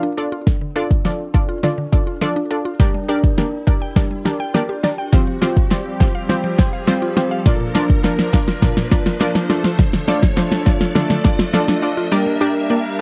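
A dry, close sound with light reverb and a 1970s studio character frames this euphoric, upbeat dance-pop build-up in 4/4 at 103 BPM, cycling through Dm, Gm, Fsus2 and Bb. Up front, a punchy, detuned sawtooth unison pluck with a filter sweep and sidechain pumping carries the accompaniment beside a tape-warm deep house drum kit with a deep kick, fat snare and hi-hat playing a fill throughout. In the background, a woody, round FM mallet-like pluck spins chorused arpeggios with slapback echo, a smooth supersaw adds pumping sustained chords from 5.1 seconds, a crisp group handclap sits very quietly from 5.7 seconds, and an electronic riser climbs beneath it all.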